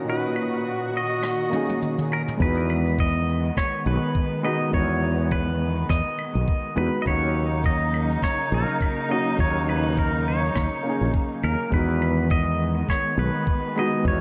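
A clean, up-front pedal steel guitar carries the melody in this smooth, relaxed sunset chillout piece, its fingerpicked slide lines shaped by volume swells and trailed by tape echo. Beneath it, a dark, mellow grand piano, also touched with tape echo, plays the accompaniment while a muted chamber string section holds veiled, con sordino chords with soft attacks and vibrato. The opening is a brief break in which a twinkling granular texture sparkles in the background with an octave-up shimmer and its own reverb and chorus, while a jazz brush kit of claves, rim click, shaker and toms plays a fill from 1.5 seconds. At 2.4 seconds the texture drops away as a growly, bright fretless bass and a gritty, thumpy electronic kick enter, giving the groove a lightly swung sixteenth-note feel. The chords move gently between major-seventh and minor-seventh colours, and the whole mix is soaked in plate reverb for a dreamy, unhurried glow.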